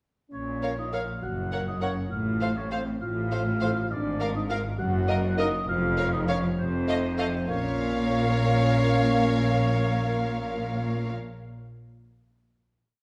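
The oboe, French horn section, cellos and double basses open together at 0.3 seconds, the mellow oboe doubling the tune at the octave over mellow sustained horn chords and a rich, focused bass line with the double basses up front, before the violins, flute, bassoon and violas join at 0.6 seconds. This is a magical, mischievous film cue in Bb minor at 67 BPM in 6/8, where a lush violin melody with portamento rides over after-beat chords from a distant second violin section, an airy flute, a dark bassoon and background violas. A wet recital hall reverb surrounds the ensemble, and the whole piece settles onto a final Bb minor chord held from 7.5 seconds.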